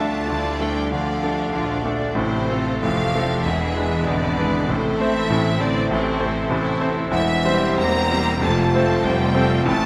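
A wet concert-hall reverb surrounds this lush, lyrical romantic passage for piano and orchestra, cut from a longer piece and moving at 97 BPM in 4/4 with a rubato feel through Dm, Am, E7, Am, C/E and F. Up front, a bright, brilliant concert grand carries the melody, its deep bass reaching down to E1, while a rich, focused violin section sings the same melodic role with vibrato above it. In the background, a second violin section adds a lush line, a very quiet, distant viola section gives accompaniment, a dark, roomy French horn section holds sustained chords with a soft attack, and intense cellos join smooth, even double basses on the bass.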